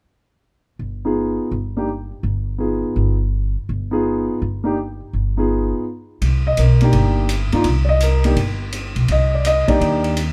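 Jazz piano trio swinging at 166 BPM in 4/4, cool and late-night in mood, cut from a longer piece. Woody, steel-strung pizzicato upright bass sits up front beside a warm grand piano, whose natural tone, long sustain and plate reverb carry the melody over a G7b9b13 harmony that drops out briefly at 1.9 s before returning at 2.6 s. After a brief break at 5.9 s, the music settles into C minor on a Cm9 chord at 6.2 s, where a distant, roomy drum kit enters with hi-hat, ride cymbal and a boomy kick under a rolled-off top, all set in a light room reverb.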